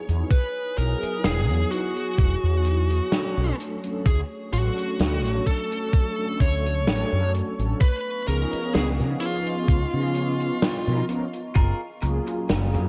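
A slow, lightly swung groove in four sets the pace, with a thumpy, sampler-style electronic kick sitting up front from 0.3 seconds alongside the hi-hat and medium-tuned snare of a natural country drum kit, its small-room sound washed in gated reverb. This dreamy, faded vaporwave fragment, cut from a longer piece, rests on a round, dark fretless electric bass that sits close and direct, while mellow synth brass supplies a full-bodied, detuned sawtooth accompaniment with vibrato and ensemble chorus. Behind them, a warbling, tape-like pad built from square and triangle waves drifts in the background with slow attack, long release and its own reverb, its nostalgic lo-fi colour carrying the harmony from Emaj9 through Dmaj7 and C#9 to F#maj9. A bluesy overdriven lead guitar picks the melody through distortion and tape echo until 11.0 seconds, and a clean, compressed semi-hollow electric guitar slips in at 11.6 seconds with a brief picked riff touched by subtle chorus and echo. 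The recording has light reverb, a small-room ambience and the worn character of cassette tape.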